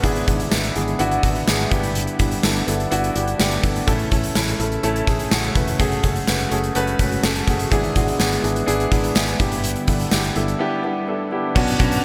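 A polished grand piano and a punchy gated drum kit open together in this 1980s-style pop excerpt, joined from the first moment by a fretless electric bass and a very quiet string machine voicing violas. The tempo sits at 125 BPM in a straight 4/4, and the mood is nostalgic and uplifting as the chords move through E7/G#, G6, A and F#madd9. Up front in the mix, the piano carries the accompaniment, while the drums bring bright cymbals, a medium-tuned snare and a gated room sound with gated reverb. The string machine hovers beneath with a warbling, evolving sawtooth tone and soft attack, and the bass sits low and amped. A jingly, distant tambourine enters at 0.5 seconds and stops at 10.2 seconds, just before a brief break at 10.6 seconds, all set in a moderate, lush hall reverb with bright digital production.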